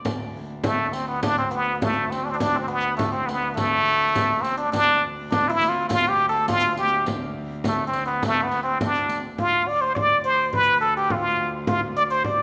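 A moderate recital-hall reverb surrounds this cut from a longer medieval dance, which has a mysterious, ancient air at 103 BPM in 2/4 and D dorian. A clear, reedy viola da gamba holds a low D drone with an airy, gut-string bow, while a close, dry frame drum and a distant riq with dark jingles keep time; the riq stops at 9.4 s as the music moves into a new section. Up front from 0.6 s, a plunger-muted trumpet carries the melody in a forceful, punchy jazz style, its brilliant wah-wah tone touched with light vibrato.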